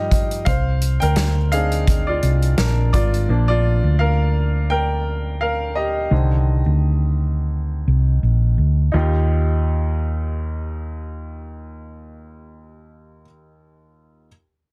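The clear, woody upright piano carries this hopeful, anthemic piano-driven pop passage in Eb major at 85 BPM, taking the solo spotlight through 8.9 seconds as the harmony moves from Cmadd9 to Bb and back before settling on Ebadd9. Beneath it, a dark, round hollow-body electric bass sits up front until 13.2 seconds, while a natural acoustic drum kit with a punchy kick and medium-tuned snare plays only until 3.3 seconds, within the track's lightly swung 16th-note feel. The sound is dry and dense, with a heavily limited modern master.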